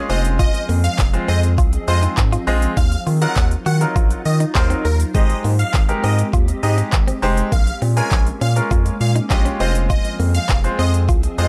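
Upbeat and summery, this dance-pop excerpt at 101 BPM moves through Fm, Ebmadd9, Abmaj7 and Bbm7 with a clear concert grand piano, a glassy, warbling FM pad and a round, deep analog bass all pumping under sidechain compression, a bright, clean electric guitar riff with subtle chorus tucked in the background, a huge, lush supersaw melody trailed by analog delay, and a layered electronic pop kit with knocking kick and crisp hats, joined from 1.0 to 10.6 seconds by a very quiet, hollow group handclap, all in a dry, gritty hardware recording.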